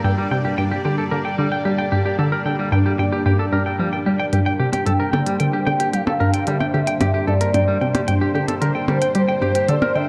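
A straight 4/4 pulse at 112 BPM drives this expansive, mysterious stretch of ambient, sequencer-driven space music in G dorian. Up front, a juicy, squelchy blip pluck plays a riff with chorus and delay over a lush, detuned unison pad that holds a G minor chord through chorus and phaser. A clean, hollow-body electric guitar picks delayed arpeggios, clicky, overdriven electronic hi-hats and percussion blips enter at 4.3 seconds, and a smooth, expressive synth lead with vibrato and ensemble chorus carries the melody from 4.9 seconds, set in a wet scoring-stage reverb with a cassette-tape tint.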